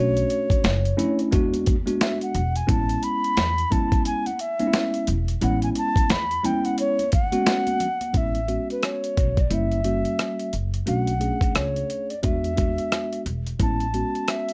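A lazy, swung sixteenth-note groove in 4/4 sets this relaxed, cool jazz-hop clip in motion, driven by a dusty, sampler-style drum kit whose thumpy kick, medium-tuned snare, rim click and hi-hat arrive up front with overdrive and gritty 12-bit character. Beneath it, a pizzicato upright bass with steel strings gives a woody, dark low end, while a worn, slightly out-of-tune tine electric piano supplies mellow, clean chords under plate reverb, moving through Bm9, E7 and Amaj9 voicings with a turn to F#7b9 in the second half. The clay alto ocarina carries the melody, sitting forward with an airy, reedy tone, a crisp chiffing attack and vibrato, and it takes a solo through the opening 8.1 seconds. Very quiet maracas and congas with hard hands add a bright, small-room sparkle from 0.2 seconds until they stop at 8.1 seconds, where the second section begins. A light reverb surrounds the whole mix, and the clip is cut from a longer piece.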